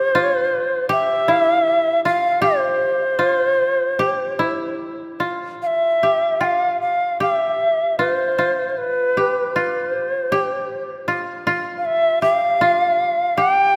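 Austere and calm, this short stretch of Japanese chamber music, cut from a longer piece, moves at a rubato 78 BPM in 4/4. The shakuhachi carries the melody throughout, its end-blown bamboo tone airy and reedy, with a crisp, chiffy attack and vibrato placed up front. Beneath it the koto plays a second line from start to finish, its fingerpicked acoustic sound dry and woody, sitting lower in level but also close to the listener. The material shifts into a new section at 5.6 seconds and continues to the cut at 13.8 seconds. A moderate church-like reverb with a long tail surrounds the pair, lending the spare duet a spacious, contemplative air.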